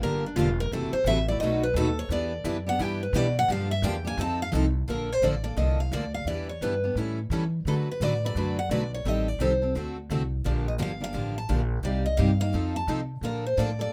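A full-bodied, up-front dreadnought guitar carries the melody with audible finger squeak, opening with a guitar solo passage before the music settles into Bb major at 4.9 seconds in this charming, playful stretch of acoustic string swing at 172 BPM. Two picked steel-string guitars comp underneath, one a warm jumbo and the other a bright concert model with fresh strings, while an up-front pizzicato upright bass on gut strings adds a woody, dark, thumpy pulse. Light reverb gives the swung eighths a gentle sense of space as the chords move through jazzy sevenths and sixths before resolving on Bbmaj7.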